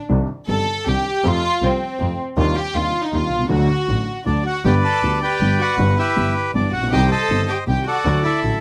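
Close, detailed microphones and light reverb give this brief cut from a longer tango an intimate, finely resolved sound, with a nostalgic and passionate mood at 159 BPM in 3/4 and a rubato feel. A dark, woody upright piano provides the accompaniment while a clear double bass, bowed by one player with smooth, even vibrato, anchors the low end. A studio violin section, bowed sul tasto with a soft attack and a pure, floating tone, takes a solo turn through the opening 4.6 seconds over harmonies that move from Cmadd9 to F and on to D. The reedy, bright bandoneon enters up front at 4.3 seconds to carry the melody. The music then settles into G major, passing through Em/G and Cm before closing on D.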